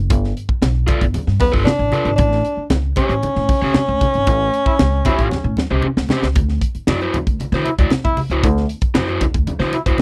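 Gritty and strutting, this funk groove moves at 115 BPM in a straight 4/4 feel, cut from a longer piece and recorded dry and close in a 1970s studio style with a faint mains hum. A woody pizzicato upright bass with steel strings opens the track up front, joined almost at once by a crisp fusion drum kit with a punchy kick and high-tuned snare, plus bright, low-tuned congas played with hard hands and a compressed, saturated edge. A crunchy overdriven electric guitar enters at 0.9 seconds as picked accompaniment, and a breathy tenor saxophone takes the melody from 1.4 seconds with vibrato, a soft attack and scooped, jazz-style notes. A clear trombone, distant and roomy, adds a second line from 4.7 seconds, overlapping the saxophone before it drops out, while a band accent and a drum fill push toward the new section at 6.4 seconds. The harmony moves from G9 to A7, then settles on D9 for the closing stretch.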